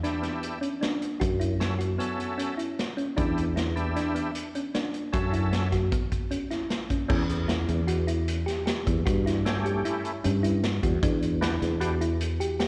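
Heard as a live gig through the venue's PA, this progressive instrumental excerpt carries a moderate club reverb and a recital-hall bloom, with a dulled top end that keeps the whole picture dark. The band drives along at 153 BPM in an uneven 5/4 with a straight feel, sounding intricate and driving as the harmony moves between Em7 and F#m7 before shifting to A7/E at 7.1 seconds and settling back on Em7. A vintage acoustic drum kit sits up front with a punchy kick, a medium-tuned snare, hi-hat and shadowy crash cymbals. Entering at 1.2 seconds, a sustaining fretless electric bass adds a growly, direct low end coloured by ensemble chorus. Over it, a thumb-piano-like FM synth pluck spins round, tine-like arpeggios with a fast attack, a decaying tail and a noise layer, treated with chorus, analog delay and slapback echo. An overdriven tonewheel organ fills in the accompaniment with a thick, gritty tone, key click and third-harmonic percussion, its chorus vibrato and slapback echo giving it a shimmer until it drops out at 12.0 seconds.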